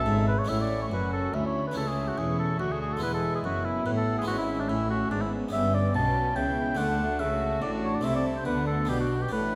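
A mellow oboe carries the melody up front from the opening moment, smooth on top with light vibrato, in this lively, brilliant baroque-style concerto movement with solo episodes. It moves at 143 BPM in 3/4 with a straight feel, beginning in A major and shifting to D major at 5.5 s. Behind the oboe, a dark, gut-strung violin section also plays melody high in the background, a rich second violin section adds a second line, and a distant viola section fills in the accompaniment. A close-miked, dry harpsichord with a round, full plucked sound supports the harmony, while a nasal cello section and a reedy double bass section hold down the bass in period style. The ensemble sits in a reverberant recital hall, and the passage is cut from a longer piece.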